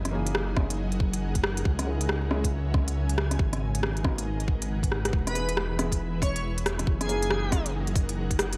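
A light reverb and a layer of vinyl crackle frame this melancholic, nocturnal future garage excerpt, cut from a longer piece and moving at 138 BPM in 4/4 with a 62% swing on the sixteenths. An ethereal, warbling pad holds sustained chords through F#6, C#m, G#m7 and E, its slow attack and long release softened by ensemble chorus and built-in reverb, while a deep, rumbling detuned saw bass sits up front; both pad and bass carry sidechain pumping. A felt-muted upright piano plays mellow accompaniment in the background, its audible action noise and intimate tone trailing into dub echo. The organic electronic kit brings crisp hats and rim clicks, with a tight, tape-flavoured kick arriving at 0.6 s, both re-recorded in a large room and placed up front, and a drum fill lands at 4.9 s. At 5.3 s a dreamy, bright sine lead with vibrato, chorus and dub echo carries a brief melody before dropping out at 7.6 s.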